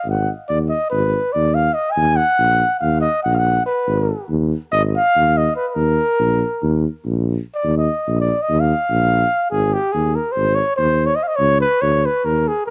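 Restless and fiery, this Balkan folk excerpt in Eb harmonic minor drives along in 9/8 at 286 BPM counted in eighths. A dark trumpet carries the melody up front with light vibrato, a smooth top and a classical poise, soloing from 0.0 to 9.5 s through a cassette-tape colour, while a close-miked tuba anchors the bass with soft attacks and its own gentle vibrato over chords moving from Abm to Ebm. At 9.5 s the piece shifts to a new passage, all captured as a home cassette recording with light reverb and a small-room ambience.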